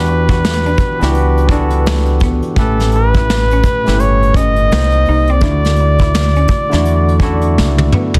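Swung sixteenths in 4/4 give this brief, sensual neo-soul and R&B fragment its sway, with a vintage brush kit (dark, tight kick and a softly clipped snare) sitting up front beside a deep, round, punchy dub-style fingered bass. A barky tine electric piano comps through a combo amp over Em7, A7, Cm7 and Dadd9, while a lo-fi, slightly broken-up guitar murmurs a second line in the background. A warm flugelhorn with light vibrato carries the smooth solo melody in a dry, dense, heavily limited mix, and the drums close on a fill at 7.6 seconds.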